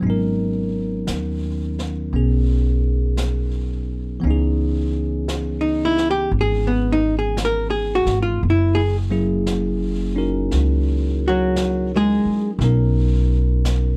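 A clean, dark-toned archtop guitar, picked and hollow-bodied, carries the melody of this wistful, melancholic jazz ballad, moving into a solo at 4.2 seconds before falling silent at 12.5 seconds. Beneath it, a bell-like tine electric piano adds bright, direct accompaniment colored by a phaser. The pizzicato upright bass is woody and thumpy and sits up front, while a brushed drum kit of snare and hi-hat plays quietly in the mix with a natural small-room sound. The tempo is a slow 57 BPM in 4/4 with swung eighth notes, and the harmony moves from G#m11 through C#m9 and F#9 to Bmaj7. The production is dark and warm with little reverb, and the passage is cut from a longer piece.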